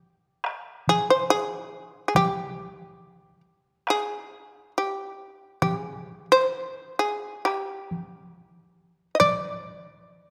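Calm and austere, this Japanese traditional chamber music moves at a rubato 69 BPM in 4/4. A taiko ensemble struck with heavy sticks enters at 0.4 seconds and sits well behind the shamisen, whose bright, buzzing, fretless plectrum-plucked melody joins at 0.9 seconds and stays up front between G4 and Eb5. A moderate concert hall reverb surrounds this brief passage, cut from a longer piece.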